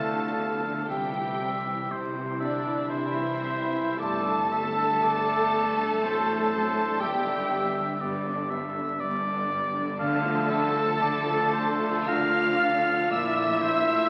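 A clear, up-front solo oboe carries a second line through this serene, tender slow romantic movement for symphony orchestra, cut from a longer piece in a rubato 3/4 at 59 BPM. A lush violin section sings the melody with a focused, smooth top, while a very quiet airy flute ensemble, a very quiet warm clarinet and a second violin section add further lines. Violas, mellow distant French horn chords, tight trumpet stabs and bright ringing harp arpeggios sit beneath, over cello and double bass, with harmony moving from G7/D through C, G, D7/A and Dm to Bbmaj7, all heard through a wet concert hall and the crackle of a very old 78 rpm record.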